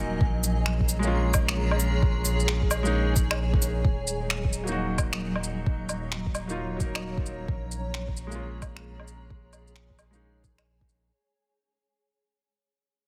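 A felt-muted upright piano with audible action noise, a cloudy, detuned granular pad with vintage 12-bit grit, and a deep, round sub bass all pump together from the start of this nocturnal, ghostly future garage fragment in Eb minor at 132 BPM, swung at 64% on 16ths, as an overdriven soft kick and up-front overdriven cabasa, shaker, finger snaps and woodblock join, while the delayed, low-passed piano moves over Bbm7 and Ebm through a heavily compressed radio sound that fades out from 3.8 seconds.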